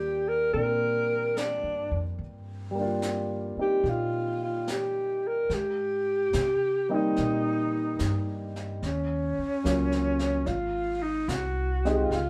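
A breathy alto saxophone carries the melody of this intimate, late-night jazz ballad in swung 4/4, its mellow, scooped notes shaded with vibrato and placed up front with a roomy, distant quality. An upright piano with audible action noise and long sustain supplies a smooth, vintage accompaniment. A woody, growly pizzicato upright bass holds the low end, and a brush kit with a high-tuned snare and hi-hat slips in at 0.5 s, sitting quietly in the mix. The band plays live together in one studio room with moderate reverb, and the harmony shifts into a new section at 5.5 s in this fragment of a longer piece.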